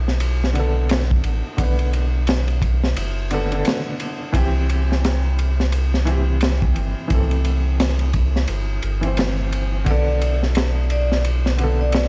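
A felt-muted upright piano and a round sine sub bass open this brooding trip hop excerpt, with a crunchy breakbeat kit joining almost at once. The piano sits low in the mix, its thin felt and audible action noise dressed in tremolo, vintage 12-bit sampler grit and tape echo as the harmony moves from Bm7 to C and back. The deep, sustained bass sits up front, while the swung acoustic drums bring a tight kick, a high-tuned snare and dark ride cymbals through a saturated, rolled-off top. At 9.9 seconds a vibraphone with medium hard mallets and its motor off enters in the background on a lone ringing D5, touched with tape echo. The recording has a dry hardware character with vinyl crackle over a studio ambience.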